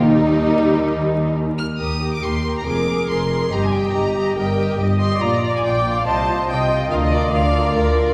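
Restless and dramatic, this quick classical-period excerpt for string orchestra sets a clear, intense first violin melody with vibrato over a rich, smooth second violin line, distant violas, close cellos and even double basses, all heard from further back in a reverberant scoring stage with a faint vinyl crackle.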